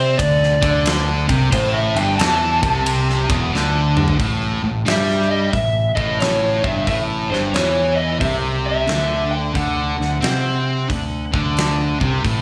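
A swung 90 BPM groove in 4/4 drives this raunchy blues rock and southern rock cut, taken from a longer piece, with a thick, bright fuzz guitar riff, double-tracked and up front, over a growling overdriven bass and a huge arena drum kit with a fat snare and punchy kick that enters at 0.2 seconds. A dark, overdriven slide guitar carries the melody with digital delay, soloing through the opening 4.2 seconds before a drum fill leads into the next section, where the harmony moves from A5 to D7 at 9.6 seconds. Light reverb gives the whole a small-room feel.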